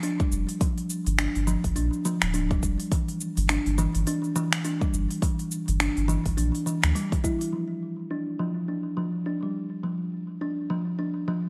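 Organic downtempo at 104 BPM in 4/4, this excerpt from a longer piece sits in G dorian with a swung sixteenth-note feel and an earthy, mystical mood. A woody, fingertip-plucked kalimba plays soft, short arpeggios through a low-pass filter and delay, running from the start to 11.4 seconds. Beneath it, a deep house drum kit of cabasa, finger snaps and smooth hi-hat is joined by a deep, layered electronic kick, both dressed in studio reverb, while a round sine sub bass with a fast attack and sustained tone pumps through sidechain. The harmony moves from G7(no3) to G5 at 2.9 seconds, and at 7.5 seconds the drums, kick and bass have dropped away, leaving the kalimba alone over unharmonized space. The parts sit up front, with a light reverb over the whole recording.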